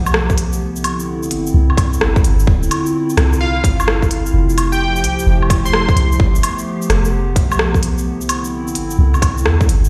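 A warbling, lo-fi pad opens this future garage excerpt at 129 BPM, holding detuned, nostalgic chords through chorus and its own reverb while sidechain pumping makes it breathe against the beat. Beneath it, a soft, round 808-style bass sits deep and up front, also pumping, while an overdriven electronic drum kit of crisp hats, rim clicks, shaker and woodblock swings on the 16ths alongside a tight, overdriven kick. Both drum parts carry the roomy sound of being re-recorded in a large space. The harmony drifts through G9, Cmaj9, Dm9 and Fmaj9, giving the piece a ghostly, nocturnal feel. At 3.4 seconds a punchy, catchy unison lead enters with a detuned sawtooth body and sub octave, its short phrase trailing dub echo until it stops at 6.3 seconds. The whole mix sounds as if it were played on a big sound system in a bare stone room, adding a light stone-room reverb.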